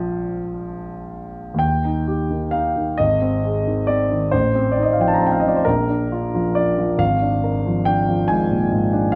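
A polished grand piano sits up front in this dreamy, nostalgic romantic nocturne, its tone warm and present from 0.0 to 9.2 seconds as it plays alone across a range from Ab1 to Bb5. The pace is slow and rubato, moving in 6/8 at roughly 42-48 BPM counted in dotted quarters, with the instrument tuned to A4 = 441 Hz. A brief opening passage rests on Bb before the music opens into a longer second part at 1.6 seconds, drifting through Eb, Ab, F7/A, back to Bb and then Bb7/Ab. Close, detailed microphones capture the instrument intimately, while a moderate recital hall reverb with a 1.4-second decay gives it a gentle sense of space. The passage is cut from a longer piece, so it feels like a fleeting glimpse into a wistful reverie.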